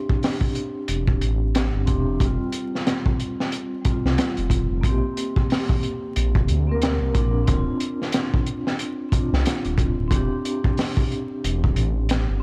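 Trip hop excerpt with a melancholic, hypnotic pull, built on a crunchy breakbeat kit with a punchy kick and high-tuned snare, gritty and saturated with a rolled-off top, sitting up front beside a deep, rumbling detuned saw bass that enters at 0.9 seconds, its beating tone thickened by tube saturation. A mellow vibraphone played with soft mallets rings through the chords from Cadd9 to Fsus2, Bbsus2 and Dm7, its metallic, airy sound shaped by tremolo, tape echo and a filter sweep that runs through the whole passage. The recording carries a worn, cassette-like character with warbly pitch drift and vinyl crackle in a studio reverb.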